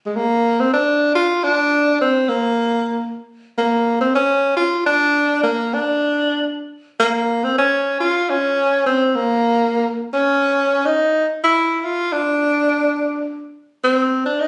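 Jazz with a swinging, relaxed mood, this brief excerpt is cut from a longer piece and features a lone tenor saxophone playing solo for its full length. The horn sits up front with a breathy, mellow tone, colored by vibrato, subtone and scooped notes, and its top stays smooth. Its line stays in a low-to-middle register, which suits the laid-back jazz phrasing. A moderate studio reverb gives the saxophone a touch of space. The sound carries the slightly informal character of a phone recording made in the room.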